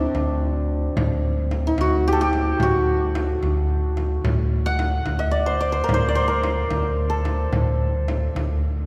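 A deep church reverb, lingering about 3.3 seconds, surrounds this stately, passionate excerpt of Persian modal ensemble music in dastgah homayun on D. It moves at 73 beats per minute in dotted quarters, in a straight 6/8. The hammered santur carries the melody up front from the opening, its shimmering, ringing tone spanning C4 to F#5. Beside it, a mellow fretless electric bass holds D2 for the full 8.9 seconds, sounding dark, round and amped. A warm acoustic frame drum enters at 0.1 seconds and sits lower in the mix, playing beneath the other parts until 8.5 seconds.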